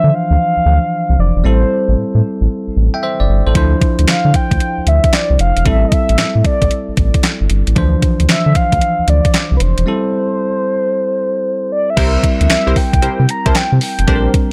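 Bouncy and confident, this is a new jack swing R&B cut in D minor at 114 BPM, with a swung sixteenth-note feel, taken from a longer piece. A mellow, horn-like synth lead carries the melody up front, its soft attack and vibrato dressed in chorus, over a bell-like tine electric piano that stays bright and clean in accompaniment. A round, deep analog bass sits prominently beneath, dark and sustained, as the harmony moves between Dm9 and Am7. At 3.6 s a crisp 8-bit drum machine enters with a thumpy kick, medium-tuned snare, handclaps, hi-hat and crash cymbal, its overdrive giving the sampler-style kit a gritty edge. A break arrives at 9.9 s, and at 12.0 s the chord shifts to C7 as a punchy, detuned polysynth comp adds funky stabs with a filter sweep and chorus, all in a dry, close-sounding mix.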